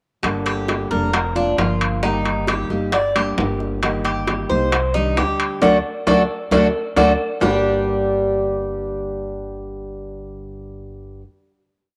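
Sultry and danceable, this short, complete piece of Cuban son in the guajira vein moves in a straight four. Up front, the Cuban tres picks an arpeggiated guajeo on metallic double strings, some doubled at the octave. Beneath it, a full-bodied nylon-string guitar is fingerpicked and strummed with muted slaps, while a woody, thumpy upright bass on gut strings plays a pizzicato tumbao that anticipates the chords. In the background, round, low-tuned bongos keep steady eighths under hard hands alongside a hand bell, and ringing metal-shell timbales play a shell pattern and bell with a vintage, band-limited tone. The band hits a shared accent near the end of the verse, the drums fill at 7.2 seconds, and the percussion drops out as everyone else settles onto a final G minor chord from 7.4 seconds, bathed in a wet spring reverb.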